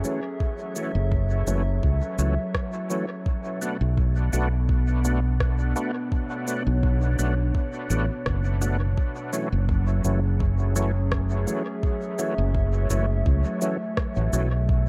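Ambient dub at 84 BPM in F# minor, spacious and deep, this cut from a longer piece moves between F#m7 and Bm7 over an echo-heavy digital ambience, with a warbling, nostalgic pad holding sustained chords and a gritty, overdriven tonewheel organ firing stabs through chorus vibrato, a slow rotary speaker and dub echo. Electronic shaker and rim click, tape-warm and thrown into dub echo, sit beneath a soft, up-front electronic kick that arrives at 0.4 seconds. A dark, round fingered electric bass enters at 0.9 seconds and anchors the low end up front.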